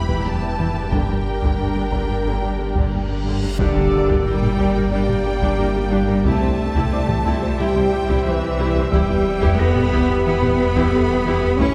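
A steady, straight 90 BPM pulse in 4/4 is driven by a compressed, saturated taiko ensemble struck with hard sticks and a tight, detuned sequenced synth playing arpeggios, all under a vast, tense hybrid orchestral and electronic film score in G dorian, cut from a longer piece that moves from Em to Gm and later C. Lush, vibrato-laden violin sections carry a focused melody and an intense, distant second line over a smooth viola accompaniment, a silky analog string pad, and dark, very quiet French horn chords, while a deep, thick sub bass, an expressive double bass section and a prominent, rich studio cello section anchor the low end. A huge reverse cymbal rises into an impact at 3.6 seconds, where a bright trombone section joins with sustained chords, and a clear, natural baby grand piano adds faint high texture from 1.9 seconds, all set back in a wet scoring-stage reverb.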